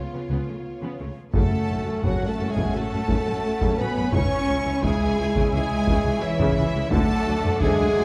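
A dark, roomy concert-hall sound frames this heroic, brooding orchestral film cue in F# minor at 86 BPM, cut from a longer piece and opening with a short build-up over a C#7 chord. Lush bowed violins carry the melody with vibrato, backed by a distant second violin line, smooth violas, rich cellos, clear double basses and somber French horn chords. At 1.3 s the music lands on F# minor as band-limited taiko drums, tight trumpet stabs, a hollow mellow flute, a very quiet tuba, a faint sustained string section and a brief timpani figure join in, moving through C# minor to D.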